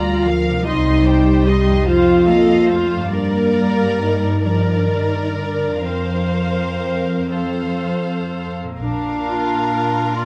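Warm and serene, this slow romantic orchestral movement in Bb major drifts in a rubato 6/8 at around 40-50 BPM, with a dark, lush violin section carrying the melody over a focused, distant second violin line, rich violas and a ringing harp playing arpeggios in the background. Dark horns hold distant, roomy chords until 8.3 s, while an intimate cello section and soft-attack double basses anchor the bass. At 8.8 s, as the harmony settles on Bb, a clear solo clarinet steps up front with a short second line, all captured in close detail with light reverb in a fragment cut from a longer piece.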